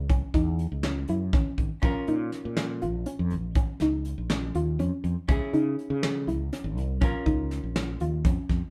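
A fretless electric bass opens this tense, intricate progressive instrumental, joined almost at once by a soft, round synth pluck tracing chorus-tinged arpeggios and a dark, smooth brush kit with a punchy kick, all moving in 7/8 at 243 BPM in eighths, in Bb minor. At 1.8 s a clean, hollow-bodied archtop guitar enters with picked accompaniment while the harmony shifts between Dbm and Bbm. The up-front bass and drums sit in a moderate studio reverb that gives the feel of a band playing live together in one room, in a short passage cut from a longer piece.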